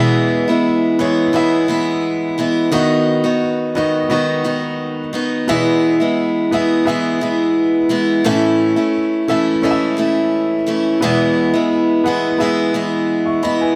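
A picked parlour steel-string acoustic guitar with fresh strings sits up front, while a clear, intimate grand piano with audible action noise accompanies it at a softer level, in this heartfelt, sunny acoustic pop excerpt in E major at 87 BPM, moving through E, B/D#, E, A and Eadd9 with light reverb and a close, detailed sound.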